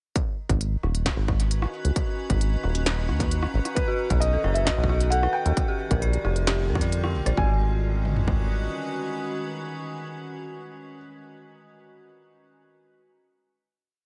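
Melancholic and eerie, this short IDM piece sets a glitched, ever-changing beat of clanging snare, crisp hats and rim clicks with a digital delay against a distorted, tape-warm kick and toms, while a rubbery, resonant acid bass riff sits up front with tube saturation. An icy, crystalline glass pad with chorus holds slowly shifting chords from 1.0 s, and from 3.8 s a soft, felt-muted upright piano carrying a gritty 12-bit sampler texture and delay traces a free melody over an inharmonic FM bell whose 7-step arpeggio loop drifts against the bar. The groove falls away at 7.4 s, leaving a final G#m7 chord to ring out in light digital ambience.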